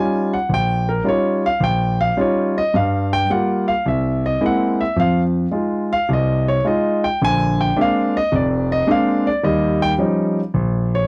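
Relaxed and sophisticated, this short solo jazz passage is cut from a longer piece and swings easily at 108 BPM in 4/4. A lone concert grand piano carries everything from start to finish, ranging from a deep F1 in the bass up to Ab5. Its tone is intimate and natural, with long sustain and the audible noise of the instrument's action adding a sense of closeness. The harmony moves from Eb9 through Gm7, Caug7, Fm7 and Bb9 before settling back on Eb9 at 9.4 seconds, bringing the progression home in an Eb mixolydian colour. The sound is dry and close, in the manner of a 1970s studio recording, with the piano placed up front and little room ambience around it.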